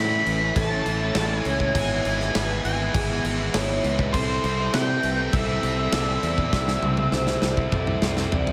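A dark, fuzzy lead guitar sings the melody through digital delay, over a bright, double-tracked overdriven guitar riff, a growling overdriven fingered bass and a very quiet, swirling vintage pad warbling with phaser and chorus. At 0.3 s a big acoustic rock kit comes in up front with a tight kick and a medium-tuned snare, while a hard-mallet vibraphone rings metallic arpeggios through delay in the background. This hopeful, cinematic post-rock fragment sits in a moderate concert-hall reverb, and a drum fill closes it from 6.5 s.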